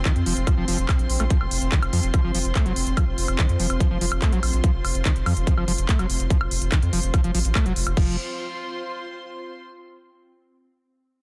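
A tight, up-front electronic kick drives this intense, alien psychedelic trance excerpt at 144 BPM, joined by a layered techno kit of crash, handclaps, smooth hi-hats and woodblock in a small room, a round, deep analog bass, a squelchy, aggressive acid line with distortion, chorus and dub echo sitting in the background, a bright, evolving wavetable pad on an F5 chord with ensemble chorus and a filter sweep through its first 8.0 s, and a veiled, con sordino string section with vibrato that carries on alone until 9.6 s, with the pad, strings and acid line each showing sidechain pumping in a dense, heavily limited master.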